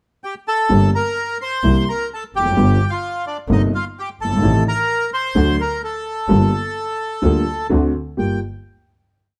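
A reedy, airy bandoneon opens this short, sultry tango alone at 0.2 s, its dark tone up front and softened by plate reverb as it lays out a motif-based melody in sentence-like phrases, partly doubled in octaves. At 0.7 s a dark, mellow upright piano with a woody, boxy character and a clear, earthy double bass join together. Both play a marcato tango rhythm in two, the bowed bass sounding distant with a light vibrato. Set in G minor at 128 BPM in 4/4 with a rubato feel, the melancholic harmony moves through chords such as Gm, C7, Adim and D7 before settling on a closing Gm7 at 8.2 s. A light reverb gives the whole piece a gentle sense of space.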